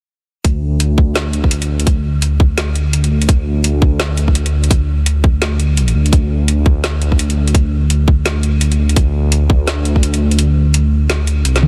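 A deep, rumbling detuned saw bass arrives at 0.4 seconds alongside a tight, tape-warm electronic kick and a small-room drum kit with a woody snare, metallic hats and toms, setting a dark, cinematic half-time drum and bass groove at 169 BPM with a swung sixteenth feel. The beating unison bass sits up front with the kick, while the dry mix feels spacious yet dense and heavily limited. The kick stops at 10.0 seconds, leaving bass and kit to carry this fragment of a longer piece to its close at 11.7 seconds.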